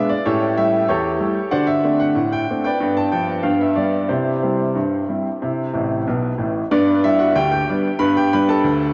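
A clear, intimate baby grand piano with audible action noise and long sustain sits up front, playing a cheerful, jaunty ragtime excerpt alone in C major at 93 BPM in 2/4, lightly touched with chorus and tape echo inside a dreamy cassette mix soaked in plate reverb with a softened top end, and a fill at 5.7 s leads into a new section at 6.7 s.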